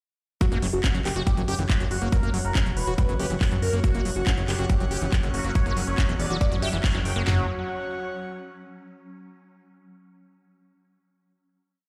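Hypnotic and driving, this short psychedelic trance piece drops in at 0.4 seconds with a tight four-on-the-floor kick, cracking snare, toms and handclaps over crisp programmed hi-hats, a fat rolling analog bass, a squelchy screaming acid line with distortion and delay, and a bold detuned unison lead riff pumping with the beat, while an airy breathy pad drifts in, a tense swarming drone joins at 4.8 seconds, and the pad lingers alone into the closing chord.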